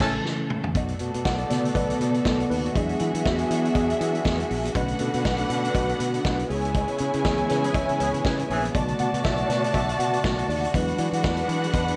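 A gritty, spring-reverbed small-room sound frames this sultry, danceable disco excerpt, where a saturated vintage drum kit with dark cymbals and a growly fingered electric bass drive a lightly swung groove under a worn, slightly out-of-tune tine electric piano, a lush woody string section up front carrying a second line, a clear distant string section holding sustained chords, a background cowbell from 0.8 seconds, and brief roomy horn stabs at 7.6 seconds during a band accent, over chords moving between Bm7, E9 and C#m7.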